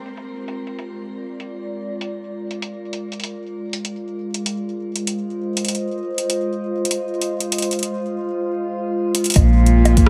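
IDM at 98 BPM with a swung, cerebral and glitchy feel, this short cut from a longer piece opens on a warbling, nostalgic tape-like pad of detuned sustained chords bathed in chorus and shimmer reverb over a booming analog drum machine of filtered bongos, metallic hats and rim clicks, moving from Bb7 to Fm7 before a drum fill at 9.1 seconds brings in a woody, nasal bowed cello with sampler grit, a round sub bass and a soft electronic kick at 9.4 seconds as the harmony returns to Bb7, all within a moderate digital room.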